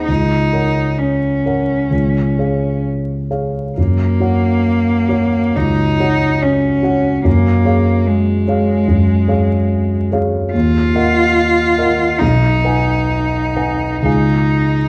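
This is a romantic classical duo for cello and grand piano, tender and warm in mood, unfolding in an unhurried 4/4 with a flexible, rubato feel. A single bowed cello carries the melody throughout the 14.9-second fragment of a longer piece, its rich tone smooth and even, shaded by vibrato. The grand piano supplies the accompaniment across a broad span of its range, with a dark, mellow, vintage character and audible action noise that lends it an intimate presence. Both instruments sit up front, wrapped in the wet reverb of a recital hall, while faint vinyl crackle and a dark, warm production give the sound an aged patina. The harmony drifts gently through a handful of chords, settling on a dominant at 14.1 seconds.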